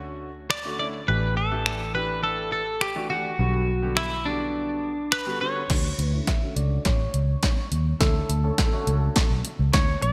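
Dance-pop with a carefree, upbeat mood, this bright 1980s-style excerpt sets a twangy, compressed twelve-string electric guitar melody with digital delay over a clear baby grand piano with lush chorus and sidechain pumping, a dark, foam-muted fingered electric bass, and a punchy analog drum machine with gated reverb. The drums enter at 0.5 seconds, drop their kick from 3.4 to 5.7 seconds, then play a drum fill as a build-up and filter sweep arrive at 5.7 seconds, all in a lush hall reverb.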